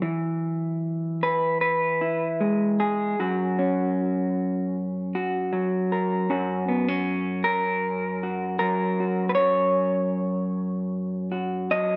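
An electric guitar played through a small old amp carries this short folk fragment alone from 0.0 to 12.0 seconds, its fingered tone dark, slightly broken-up and compressed, with a lo-fi grain and a touch of spring reverb. The mood is pastoral and gentle, set at 77 BPM in 4/4 but played with a loose, rubato feel. The harmony rests on E before moving to F# at 3.2 seconds, and the guitar ranges from F#2 up to D#5. Close, detailed microphones and a light room reverb keep the instrument up front and intimate. The passage is cut from a longer piece, so it feels like a quiet glimpse into a larger performance.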